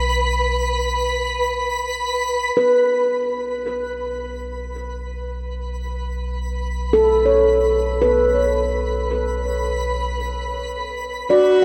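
Bathed in a huge, wet ambient reverb, this spacious and melancholic ambient excerpt drifts at 55 BPM in 4/4, opening on a round, deep analog synth bass and a twinkling, sparkling granular texture with its own shimmer, both fading in from 2.6 seconds. At that point a ringing, meditative handpan enters up front with arpeggios over a Bsus2 chord, its nitrided-steel tone played with the fingertips and trailed by a diffuse delay. A dark, bowed cello with expressive vibrato slips in at 11.3 seconds just as the passage is cut off.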